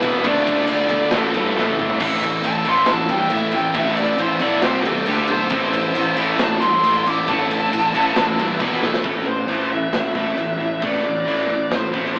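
An aggressive, menacing hard rock excerpt in A minor at 136 BPM opens with a dark, bluesy overdriven lead guitar soloing from 2.0 s over three picked, bright distorted rhythm guitars (one double-tracked high-gain part dropping out at 9.0 s, one very quiet, one tucked in the background), a growly fuzz-fingered bass and a big, punchy rock kit up front with bright cymbals and drum fills at 1.6 and 8.8 s, all steeped in a rough rehearsal-room sound with tube saturation and an AM-radio tone.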